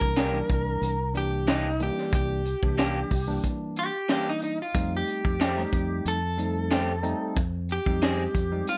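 Gritty and soulful, this short excerpt from a longer straight-eighth soul blues moves at 92 BPM in 4/4 and sits in C mixolydian. The lead electric guitar carries the solo through a small old amp, its dark, slightly broken-up tone up front and compressed, with slapback echo on the fingered notes between Eb4 and Bb4. A second amped guitar, picked and lo-fi, adds stabs from 0.2 to 8.2 seconds, while a mellow tine electric piano fills in the accompaniment through a combo amp, bathed in lush chorus. Underneath, a fingered electric bass gives round low notes from C2 to F2, and a crunchy breakbeat kit of saturated texture and rolled-off top sits up front with a high-tuned snare, tight kick and hi-hat. The harmony rests on C9, shifts to F9 at 4.7 seconds and ends on Fm7, all in a dry, close-sounding space.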